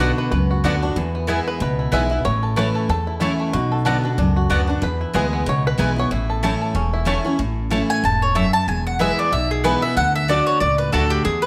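This short cut from a longer bluegrass piece opens with a twangy five-string banjo taking the lead, played with fingerpicks and sounding percussive, over a full-bodied, up-front picked acoustic guitar, a woody, double-strung mandolin playing stabs, and a dark, thumpy upright bass plucked on gut strings. The feel is virtuosic and driving at 187 BPM in 4/4 with a swung eighth-note lilt, set in A major and moving through Bm, E and A. The banjo solo runs until 7.4 seconds, and after a brief gap a second mandolin steps forward with a bright, picked melody from 7.9 seconds as the harmony turns to E and D. The guitar's finger squeak is audible. A moderate large-studio reverb gives the ensemble a sense of space.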